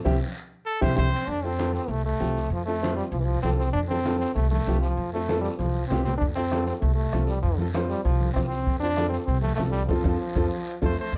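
Sunny and joyful, this short cumbia excerpt moves at a brisk, straight four-beat pulse and opens with a brief burst from a brilliant, punchy trumpet that soon gives way to a trombone solo. The trombone, also brilliant and forceful, with vibrato and a present, up-front sound, carries the line from 1.3 seconds almost to the end, when the trumpet returns for a final moment alongside a band accent. Underneath, a woody, pizzicato upright bass with steel strings sits up front in the low register, while a clear, somewhat boxy upright piano supplies the accompaniment. The percussion stays in the background: damped, low-tuned congas with a thick-skinned tone in a distant, large room, a raspy, vintage-sounding guiro, and a dry, close bombo played with a soft beater that drops out after the opening and returns around 6.2 seconds following a short drum fill. Light reverb and a dark production give the whole a mellow, rounded finish.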